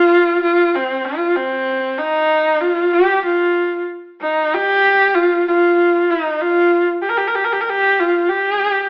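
A clear, husky horsehead fiddle carries this fragment of Mongolian traditional music alone, one player bowing horsehair strings with vibrato and portamento from the opening moment to 8.9 seconds. The mood is vast and solemn, set at 95 BPM in a straight 4/4, with the tuning pitched to A4 = 441 Hz. The fiddle's focused tone sits up front, its line moving between C4 and Bb4. A wet studio reverb with a 0.9-second decay surrounds the instrument, giving the sense of a band playing live in one room. The whole passage carries an AM radio character, and it is cut from a longer piece.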